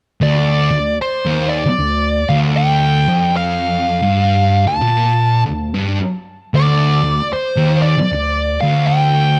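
A thick, double-tracked fuzz guitar riff and a compressed fuzz lead guitar enter together at 0.2 seconds, both picked and up front in a heavy, ominous metal excerpt in D minor at a slow 76 BPM with a swung eighth-note feel. The low riff sits between D2 and Bb2 with distortion, while the dark lead melody stays between C5 and A5, shaped by wah, distortion and analog delay. A light reverb surrounds the pair until both stop at 9.4 seconds.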